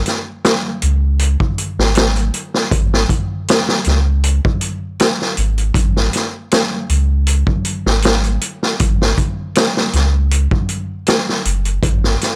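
A soft dub sub bass opens this brooding, melancholic trip hop fragment at 0.0 seconds, its deep, round tone moving between F#1 and C#2 with a fast attack and long sustain. Tube saturation colours the bass, while its blend of triangle and square wave character keeps it soft yet present up front. A street-band drum kit joins at 0.1 seconds, playing hi-hat, kick and snare in a straight 4/4 feel. The kit sounds acoustic and mid-forward in a small room, with a boomy kick, a medium-tuned snare and a rolled-off top end. The overall recording is dry and gritty, with little reverb and transformer saturation, as this short section cut from a longer piece runs to 12.4 seconds.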